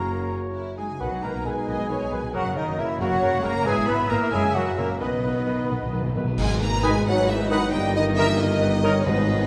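Classical and dramatic, this urgent fast romantic movement in 6/8 sets lush, vibrato-rich violins on the melody over rich violas and cellos, dark woody double basses, mellow French horn chords, ringing harp arpeggios, dark trumpet stabs and soft background lines from hollow airy flute, distant clarinet, cor anglais and bassoon, with dark cymbals and bass drum arriving at 3.7 s, a round timpani fill at 5.0 s, mellow tuba joining as the music turns minor at 6.4 s and bright trombones following at 6.8 s, all bathed in a wet concert-hall reverb.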